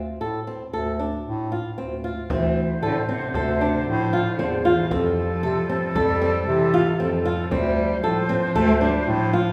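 Pensive and restless, this excerpt of contemporary chamber music in 5/4 opens with a fingerpicked flamenco-style acoustic guitar playing arpeggios over a warm, up-front solo bass clarinet bass line, and at 2.3 seconds a rich, expressive bowed cello with vibrato and portamento adds a second line while a dark, distant woodwind section holds tight sustained chords and a deep frame drum played with hard hands sits very quiet underneath, all heard from further back in a reverberant recital hall as the harmony moves from Dm7 to Fmaj9 and back.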